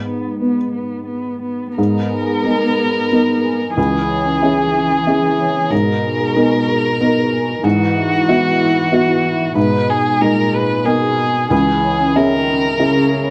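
Longing and melancholic, this short neoclassical excerpt for piano and strings moves in a rubato 3/4 at 93 BPM, tuned slightly low to A4 = 438 Hz, and circles around G# minor with touches of C# minor and an E chord over G#. A dark upright piano carries the accompaniment from the start, sitting up front with a woody, boxy tone, short sustain, a slightly detuned, worn character and audible action noise that makes it feel intimate. A muted cello plays a second line throughout, a single bowed player con sordino with a veiled sound, vibrato and a smooth top. At 1.8 seconds a single muted violin takes the melody, bowed with vibrato and placed up front, though its con sordino tone still sounds veiled and distant. At the same moment a vibraphone played with soft mallets adds arpeggios in the background, its metallic ring softened to something mellow and smooth, with a medium motor vibrato and a slapback echo. 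Light reverb surrounds the ensemble.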